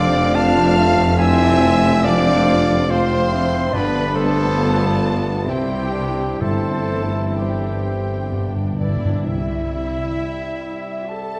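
In a rubato 3/4 at 61-73 BPM, this tender, serene orchestral passage in C major is cut from a longer piece. A lush violin section carries the expressive melody with portamento, over a pure flute and very quiet second violins on the second line, a mellow bassoon, hushed violas, dark French horns, a vintage trombone section, a ringing fingerpicked harp, warm trumpet stabs, and a bass of cellos, double basses and a punchy tuba. Round, soft-mallet timpani enter at 3.7 s and play a fill at 8.3 s, and a clear solo clarinet joins the second line at 9.3 s, all set in a wet concert hall reverb.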